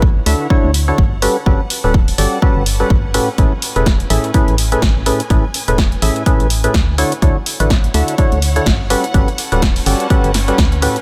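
This dry, close-sounding clip from a longer piano house track has an uplifting, joyful mood and a loose, swung groove. Up front, a punchy, layered electronic kick with a tape-warm tone, re-recorded in a large room, drives the beat. From 0.3 seconds an analog drum machine adds hi-hats and a punchy, overdriven snare. A hollow, mellow organ stab carries the riff with a percussive, fast-decaying attack, colored by analog chorus, tape echo and sidechain pumping. Beneath it, a dark, organ-like FM bass pumps along with it. A lush, bowed symphonic string section with biting vibrato fades in gradually in the background over jazzy chords that move from Dmaj9 through Gmaj9#11 and Amaj9.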